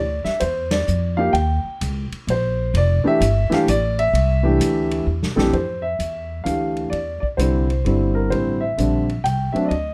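A woody, up-front upright piano carries the melody over a steel-strung pizzicato upright bass, joined at 0.2 s by a vintage drum kit of punchy kick, medium-tuned snare, hi-hat and ride with dark cymbals, in this relaxed, playful jazz piano trio fragment swinging in 3/4 at 129 BPM in F major, marked by a band accent at 0.6 s and a drum fill from 5.1 to 5.5 s before the harmony settles onto Fmaj7, the whole cast in light reverb and a dark, warm production.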